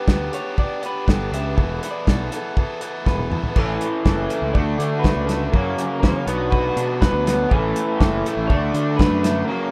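A cloth-damped, thuddy drum kit sits up front in this carefree, upbeat indie rock excerpt at 121 BPM in D major, alongside a round fuzz bass, a bright, raw garage guitar riff and a dark, slightly broken-up electric guitar melody through a small old amp with digital delay, while a crunchy overdriven guitar with lush chorus enters at 3.6 s after a drum fill, a barely audible tonewheel organ with slow rotary adds sustained chords from 7.5 s, and a break lands at 9.5 s in a rough home demo mix with light reverb.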